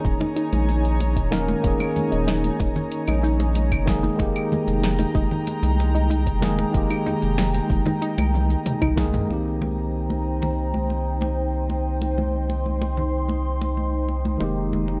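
A bright, clean tine electric piano, roughened by vintage sampler grit and trailed by delay and shimmer reverb, opens this smooth, wistful sunset chillout excerpt at 94 BPM alongside an airy, breathy pad, a round analog bass and an overdriven electronic kick. Within moments a deep house drum kit with a punchy snare, hi-hat, shaker, claves and toms joins, along with close, dry congas struck with hard hands and a soft, dark pluck arpeggio sitting in the background, its filter sweeping under chorus, delay and shimmer reverb. The bass stays up front, deep and sustained, while the chorused pad glows with a detuned, ring-modulated shimmer over chords moving from Eb7sus4 to Fm11 and later Cm7. A drum fill from 8.3 s leads into a band accent, after which the kick and kit drop away at about 9.3 s, leaving piano, pad, bass and congas as a filter sweeps across the pad. The pluck returns briefly at 14.4 s as the harmony settles back on Fm11, all set in a light room reverb.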